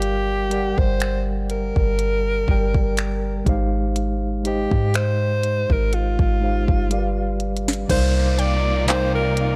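A bright, close-miked alto saxophone with vibrato carries the melody over mellow tine electric piano, a deep, boomy 808-style bass and a soft-kicked, sharp-snared R&B drum kit with finger snaps and handclaps in this moody, late-night contemporary R&B excerpt at 61 BPM in C minor, where a drum fill at 6.9 seconds leads into lush bowed strings and an electronic downlifter at 7.9 seconds, joined by a very quiet woody synth pluck at 8.4 seconds, all set in digital ambience with a dry, gritty hardware sound.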